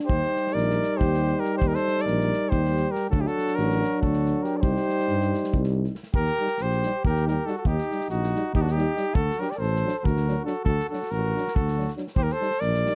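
A warm, up-front cornet carries the melody in this bittersweet, restless Balkan brass band excerpt in 7/8, over a chord cycle that moves from Eb to D and Cm before returning to Eb. A distant, roomy flugelhorn adds a punchy second line, while one euphonium plays a mellow accompaniment with vibrato and a smooth top, and a second euphonium sits in the background. An up-front tuba with light vibrato and a soft attack holds the bass, and an acoustic drum kit played with bundle sticks adds a tight kick and a medium-tuned snare from a small room, all captured in a dry, close 1970s-style studio sound.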